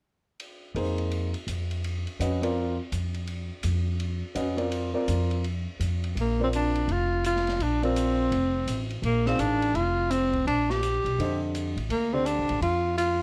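A smooth-topped tenor saxophone, up front with vibrato and scooped notes, enters at 6.2 seconds to solo over a spiritual, hypnotic modal jazz groove in Bb mixolydian at 167 BPM, swung in 4/4, where a woody, thumpy pizzicato upright bass with transformer saturation, a short-sustain grand piano and an open studio drum kit with dark cymbals, boomy kick, snare, hi-hat and ride move from Bbadd9 to Bb69, the recording tinted by light reverb and the warbly pitch drift of worn cassette tape in this cut from a longer piece.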